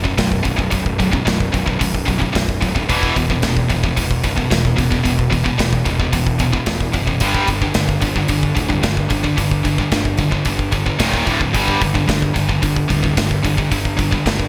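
Heavy and relentless, this heavy metal excerpt drives a straight 4/4 feel with a double-tracked, high-gain distorted guitar riff moving through power chords on B, E, G and D, a fuzzy overdriven picked electric bass underneath, and a punchy, up-front rock drum kit of kick, medium-tuned snare and hi-hat washed in gated reverb, all framed by a bright 1980s-style digital production with light studio reverb.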